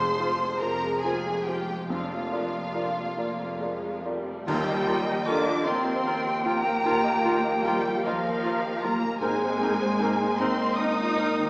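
Set in a rubato 6/8 at 46-51 BPM, this hopeful, uplifting cinematic orchestral cue in Eb major sets a lush, vibrato-rich violin melody over a clear second violin line, distant violas, a soft felt-muted upright piano, smooth cellos and double basses, with dark cymbals and bass drum stirring in the background from 1.9 s before an accent at 4.5 s brings hard-mallet timpani, an airy silver flute, a vintage clarinet, a background cor anglais and a dark, roomy French horn section, all bathed in wet stage reverb and heard from further back as if through a small speaker.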